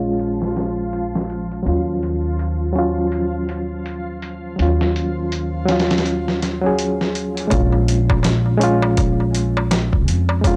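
Trip hop at 82 BPM in Bb minor with a smoky, hypnotic swing, this excerpt sets a barky, overdriven reed electric piano with tremolo and tape echo over woody pizzicato upright bass and a gritty, thumpy sampler-style drum kit, while a reversed, dreamy swelling texture drifts beneath until 7.5 seconds, when a crisp, close metal-shell darbuka joins through a dry, cassette-saturated sound, with a filter sweep running through the opening.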